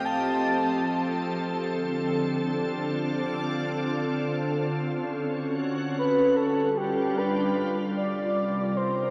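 A soft, organ-like synth pad and a breathy, flute-like synth lead sound together from the very start of this ambient piece, which is cut from a longer work and drifts in free time in C dorian with a spacious, melancholic mood. The pad holds sustained chords throughout, pure and full-bodied yet bright and up front, its slow attack and long release softened by ensemble chorus and shimmer reverb. The lead's airy melody drops out at 1.2 seconds and returns at 6.0 seconds, carried by vibrato, subtle chorus, shimmer reverb and tape echo. Underneath, the harmony moves from F7 through Dm7, F#m and G7 before settling on Cm9 at 8.0 seconds. The whole recording sits in a cathedral-like wash of reverb and carries the warbling pitch drift of worn cassette tape, lending it a hazy, nostalgic fragility.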